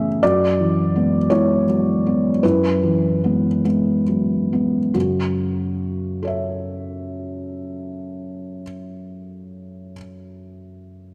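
A 6/8 pulse moves with a free, rubato feel, slowing through the opening 4.9 seconds before settling into a new passage. This is a brief cut from a longer neoclassical minimalist piano piece, melancholic and intimate in mood. A solo felt-muted upright piano carries everything, ranging from F#2 up to E5, its tone dark and hushed by thick felt, with the mechanical action audible close up. The harmony opens on an E/F# chord at 0.2 seconds and shifts to F#m7 at 4.9 seconds as the second section begins. The instrument sits up front in a light reverb, giving the recording a close, private quality.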